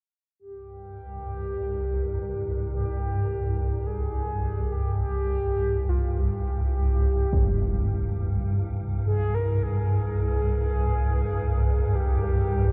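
Dark and desolate, this dark ambient drone fragment opens at 0.4 seconds with a mellow, horn-like synth lead carrying a round, warbling, vintage melody through lush chorus, delay and vibrato. At 1.0 seconds an up-front swarming drone joins low in the register, tense, detuned and granular, with a moving notch and its own built-in reverb. A huge impact, muffled by a low-pass filter, lands at 7.3 seconds, and the whole piece sits in a light digital ambience.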